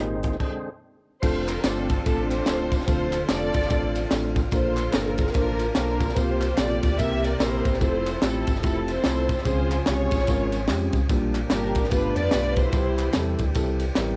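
Dark, woody bowed strings carry the melody up front from 1.2 s in this reverent, hopeful uptempo gospel excerpt in F major at 146 BPM, swung in 4/4. After a brief tonewheel organ solo with a stop at 0.4 s, the organ settles into thick, lightly overdriven chords with key click and fast rotary speaker in the background, while a bell-like tine electric piano supplies bright, clean accompaniment and a deep sine sub bass with octave anchors the low end. A crisp, punchy fusion kit with a high-tuned snare drives from the front, backed by compressed tambourine, egg shaker and group handclaps, all within the light reverb of a home recording on cassette.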